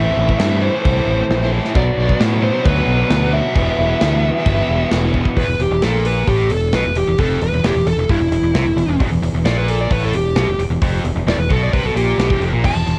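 A growling, overdriven fingered bass sits up front in this dark, relentless heavy metal passage in E minor at 132 BPM, cut from a longer piece, under a dark, high-gain lead guitar that carries the melody and takes a solo from 5.4 s. Two bright, picked rhythm guitars, one overdriven and one high-gain, churn out riffs in the background. Until 5.4 s, a very quiet, double-tracked, compressed distorted guitar adds a riff of its own, while a rich, focused chamber string section with vibrato holds sustained chords over Am, Bm and Em. An acoustic drum kit with a tight kick and medium-tuned snare enters at 0.3 s and plays a fill at 5.1 s, its sound coloured by cassette tape in a dry home recording.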